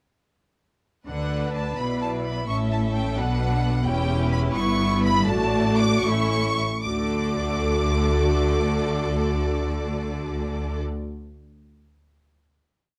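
Spirited and cheerful, this short, complete classical-period movement for string orchestra moves in a flowing 6/8 in D major at roughly 73-88 BPM, counted in dotted quarters. All five sections enter together at 1.1 seconds: a close, focused first violin section carries the melody high above, while a clear second violin section spins independent inner lines and sustained chords beneath it. Smooth, distant violas fill out the harmony with their own inner lines, the cellos supply an even sustained bass with passing notes, and an expressive, up-front double bass section doubles that bass line an octave below. The harmony travels from D through A, B minor and E minor before a cadence on A, and the tempo slows from 3.2 seconds until the music settles onto a final D major chord at 6.8 seconds, which rings until about 10.1 seconds. The production is dark, with vibrato throughout the bowed strings and a light reverb around the ensemble.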